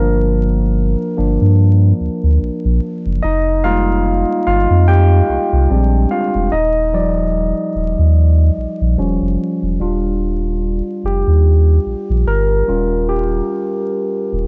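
A barky, gritty tine electric piano with subtle chorus, overdriven through a combo amp, opens this smooth, sensual neo-soul and R&B cut at 73 BPM in 4/4 with a 16th-note swing, together with a round, sine-like sub bass that sits deep and up front beneath it. The piano carries the lead across the whole clip, moving from Gm7 through Fm11 and Bb13 to Ebmaj9 in Eb major. At 9.8 seconds a new passage settles on Ebmaj9 and then Eb7, all captured as a dry, close 1970s-style studio recording tuned to A4 = 444 Hz, with vinyl crackle.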